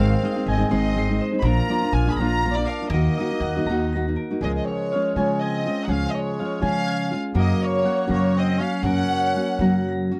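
A dry, close 1970s-style studio sound frames this passionate, dramatic mariachi excerpt in a rubato 6/8 at about 82 BPM, moving from Eb minor into Db major at 4.4 s. Throughout, a smooth, vibrato-rich symphonic violin section carries the melody over a mellow, distant trumpet second line in the background, a full-bodied fingerpicked nylon-string guitar up front, bright ringing concert harp arpeggios and a woody, thumpy pizzicato upright bass.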